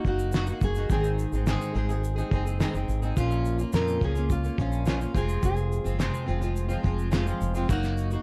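Acoustic pop with a wistful, reflective mood, cut from a longer piece, built on a fingerpicked, double-tracked steel-string acoustic guitar with a dark, jumbo body, a bright, up-front fretless electric bass and a cloth-damped, thuddy drum kit whose muffled, gritty kick, shaker and fat snare carry a rolled-off top. A deep classical nylon-string guitar carries the melody with fresh strings, plate reverb and tape echo until 6.2 seconds, while a grainy egg shaker sits in the background from 0.2 seconds. The chords move from Ebm/Gb through Ab, Bbm and Fm before returning to Ebm/Gb, all within a dark production with light reverb.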